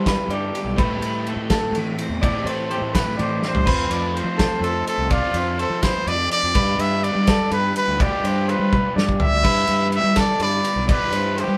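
In a straight 6/8, this intricate, bright math rock and midwest emo passage sets a twangy twelve-string electric guitar, heard only until 5.1 s, beneath lo-fi, slightly broken-up arpeggios from an electric guitar through a small old amp, a raw, overdriven, double-tracked garage guitar riff, a fuzzy fingered bass and a loose indie drum kit with a tight kick, dark cymbals and a couple of fills, while a clear, smooth-topped trumpet with vibrato carries the melody up front from 2.7 s, the band playing together in one room with moderate reverb.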